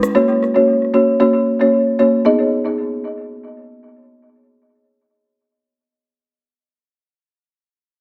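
Hypnotic and mellow, this short afrobeats fragment in a lightly swung 4/4 features a lone folk marimba, played with medium mallets, carrying the accompaniment from 0.0 to 6.7 seconds. Its woody, rustic, vintage hardwood tone sits up front with a tape echo, moving from an F# chord into G# minor at 2.3 seconds. A moderate plate reverb and digital ambience give the echo-heavy mix a soft, hazy space.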